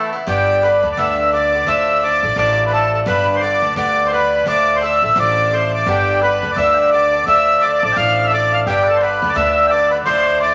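A reedy, full accordion carries the melody of this spirited, wild Celtic hornpipe from the first moment, with a bright, metallic Irish bouzouki picking its double strings up front and a sweet, very quiet hint of mellow small bagpipes. A woody pizzicato upright bass joins at 0.3 seconds, and the swung accompaniment alternates between G and Dm. At 5.9 seconds the bagpipes return with a continuous second line, all set in a large, wet studio reverb in this excerpt from a longer piece.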